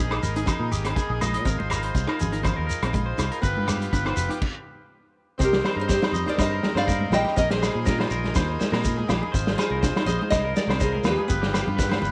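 A lightly swung sixteenth-note groove at 122 BPM drives this danceable highlife guitar band excerpt, where a punchy, dark-cymbaled vintage drum kit, a round, fingered electric bass, ringing agogo bells, soft-handed congas, a grainy shekere, a buzzy combo organ holding chords, a twangy, slightly broken-up electric guitar with spring reverb and slapback arpeggiating, and a fingerpicked steel-string acoustic in the background carry the Bb7sus4 to Fm7/Ab to G7 cycle through a stop at 4.4 seconds, before a bright, slapback-echoed nylon-string guitar melody, heard only briefly at the very start, returns at 5.4 seconds amid light studio ambience.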